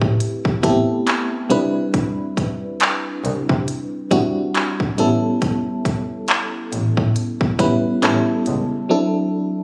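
Contemporary R&B with a longing, late-night mood, this short cut moves at a slow 69 BPM in A dorian with a swung sixteenth-note feel. Chords run from Am7 to Cmaj7, then A7 and D7, carried by a mellow, up-front FM electric piano with tremolo and a noise layer. A bowed double bass with nasal, boxy vibrato sits beneath a crisp, electronic trap kit of handclaps, hi-hat and hard-clipped kick. The bass drops out at 8.5 seconds and the drums at 8.7 seconds, leaving the piano alone until 9.6 seconds, all in a lightly reverberant, compressed room sound captured on a phone.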